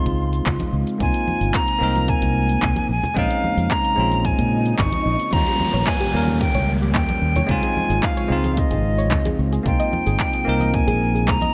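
A light reverb surrounds this relaxed sunset chillout passage at 111 BPM, cut from a longer piece, where a bright silver concert flute carries the melody up front with vibrato and digital delay over a clean, bell-like tine electric piano that moves through Dbmaj7, Ab6 and Bbm7 under an opening filter sweep. Beneath them sit a fingered electric bass, a smooth R&B kit of handclaps, tape-warm hi-hat and shaker, very quiet dry congas, a punchy overdriven electronic kick and a very quiet, airy, breathy pad, all in a straight 4/4. A swell and downlifter stir in the background from 4.5 s, and at 5.5 s, just after the harmony shifts to Eb7, a soft, round pluck adds dark chorused arpeggios with delay.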